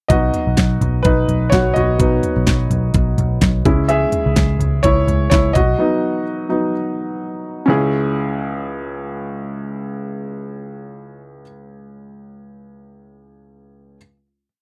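A dry, close 1970s-style studio sound frames this short, earnest and bittersweet piano-driven pop piece in C# minor at 127 BPM, with a light 16th-note swing. A woody, smooth upright piano sits up front with close-voiced eighth-note chords over a B to C#m progression, joined by a dark, round, foam-muted picked electric bass playing driving eighths and an electronic, layered pop kit stomping four-on-the-floor with a knocking kick, fat snare layered with handclaps, crisp hats and toms. The bass and drums stop at 5.7 s, leaving the piano alone to finish the pre-chorus and land on a final C#m chord at 7.7 s.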